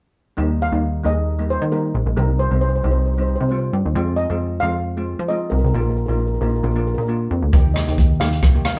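A soft, mellow steel pan playing accompaniment and a punchy, funky analog bass with a fast-plucked attack open this sunny, carefree calypso together, joined a moment later by a brighter, shimmering steel pan carrying the melody. The band sounds like it is playing live in one room with moderate reverb, with the bass sitting up front under the metallic pans. At 7.5 seconds an acoustic jazz kit with a dark, boomy kick, hi-hat and rim click comes in for the final bars of this cut from a longer piece.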